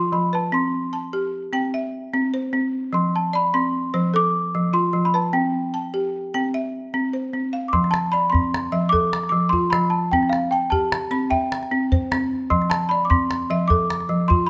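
Flowing and hypnotic, this West African string and xylophone piece in F lydian moves at 100 BPM in a straight 12/8, with a bell-like, slightly out-of-tune worn celesta carrying a sweet melody over buzzing, woody balafon arpeggios, while a small, up-front calabash joins at 7.7 seconds, all set close and detailed in a moderate recital hall reverb.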